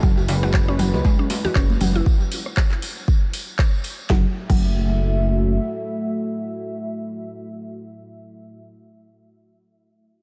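Driving and spiritual, this afro house cut at 118 BPM in F# minor opens on a drop with an overdriven, up-front electronic kick, a smooth sawtooth synth bass, woody mallet-like synth pluck arpeggios with diffuse ambient delay, a rattling djembe and a distant jingly tambourine. Moments later an afro-pop drum kit of sharp snare, metallic hats, rim clicks, handclaps and crash joins, followed by high-tuned congas, all over a moody detuned analog pad with sidechain pumping that sustains alone from 5.6 s to 8.6 s, shifting from E/F# to F#m7 at 4.1 s under light reverb.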